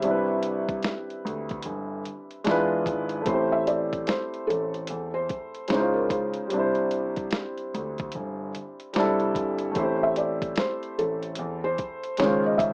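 This fragment of a longer piece comes across as a rough home demo with little reverb and a small-speaker sound, giving it a close, unpolished feel. It is dreamy, mellow lo-fi hip hop in 4/4 with a swung sixteenth-note feel, and all four parts play from start to finish across its 12.7 seconds. A soft, felt-muted upright piano carries the melody in a narrow upper range, its thick felt and audible action noise making it sound intimate and dusky. Beneath it, a woody, open upright piano sits up front with the accompaniment. A dark concert grand supplies a deep bass line. A compressed, pitched-down sampler-style boom bap kit adds gritty texture with a thumpy kick, high-tuned snare and hi-hat, while the harmony drifts through lush chords such as Cmaj9, E7b9, Am7 and Dbmaj9, the phrase repeating at 9.8 seconds.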